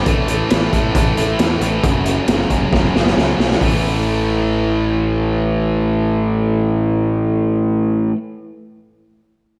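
A big arena sound fills this short hard rock excerpt, with a lush hall reverb lending the swaggering, powerful riffing real size. Up front, a bright, overdriven cranked stack guitar drives the riff across the whole clip, while a second distorted electric guitar, compressed and tucked into the background, plays the riff alongside it with a slapback echo. Beneath them a fingered electric bass growls with punchy fuzz, sitting forward in the mix. The raw garage drum kit brings a boomy kick, a medium-tuned snare and hi-hat with a saturated, gritty, rolled-off character from a small room, and it plays a fill from 2.7 seconds before dropping out at 3.7 seconds. The harmony moves from an A5 to an F#5 power chord and back, leaving the guitars and bass to carry the second half on their own.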